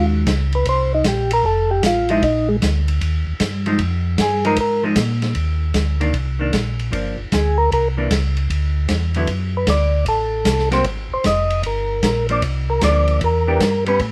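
A lightly reverberant mix carries this soulful, swinging soul jazz organ trio excerpt at 153 BPM, where a soft, flute-like tonewheel organ with percussive key click and slow rotary speaker takes the melody, pausing between 4.8 and 7.3 seconds, over a dark hollow-body jazz guitar comping chords like Ebm11 and Cm9, a round, mellow second tonewheel organ holding the bass through its own slow rotary speaker, and a muffled, lo-fi vintage drum kit with dark cymbals and a tight kick entering at 0.3 seconds.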